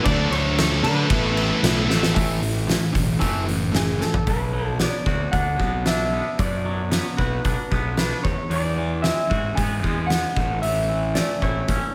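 Cathartic and dark, this quiet-loud alternative rock excerpt moves in a straight 4/4, cut from a longer piece. It opens heavy, with a fuzz guitar, a scooped high-gain guitar and a thick fuzz guitar grinding out distorted riffs in the background, while a pipe organ on a hollow, chiffy clarinet stop holds very quiet sustained chords with tremulant; the organ and the first two guitars stop at 2.1 seconds, and the thick fuzz guitar carries on to 4.2 seconds. Up front, an oversized low-tuned drum kit with a fat snare, boomy kick and dark cymbals sits in a pumping stone room, beside a growly, punchy overdriven bass, and the drums throw in fills along the way. Over it all, a slightly broken-up lead guitar through a small old amp sings the melody, treated with spring and plate reverb plus digital delay. From 2.1 seconds a clean, twangy guitar adds compressed arpeggios shimmering with harmonic tremolo and delay, as the harmony passes from D and Asus2 through A5 to Bm, Eadd9 and a closing A.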